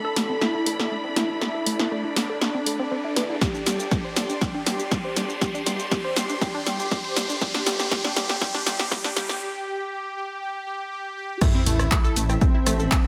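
A punchy analog drum machine sits up front in this hypnotic, cinematic melodic techno excerpt at 120 BPM, its punchy snare, handclaps, hi-hat, rim click, shaker and crash cymbal carrying a short room sound. A soft supersaw melody, smooth and full-bodied, and a tight, driving sequenced synth arpeggio both pump against the beat with chorus and delay, each shaped by a filter sweep through a long build-up. Beneath them a dark, lush symphonic string section bowed with vibrato adds texture, while a menacing detuned saw bass evolves in the background. An electronic kick drum enters at 3.4 seconds, a riser climbs until a break at 9.4 seconds, and the drop lands with an impact at 11.4 seconds as the harmony moves from Asus2 through Gsus4 to Amadd9. A moderate digital room reverb binds the mix together.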